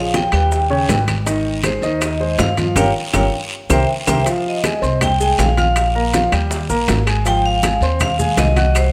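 A lively, danceable Afro-Cuban jazz groove in straight four drives this short cut from a longer piece, with ringing metal-shell timbales, thin-skinned low-tuned congas, tight high-tuned bongos, raspy guiro, grainy maracas and claves sitting mostly in the background behind an up-front pizzicato upright bass with a woody, steel-strung tone. Over a smooth, vintage grand piano accompaniment, a bright vibraphone with medium hard mallets carries the melody, its metallic sound colored by fast motor vibrato and tape echo. The band hits an accent from 2.8 to 4.3 seconds before the tune moves into a new section, captured with close, detailed microphones and light reverb.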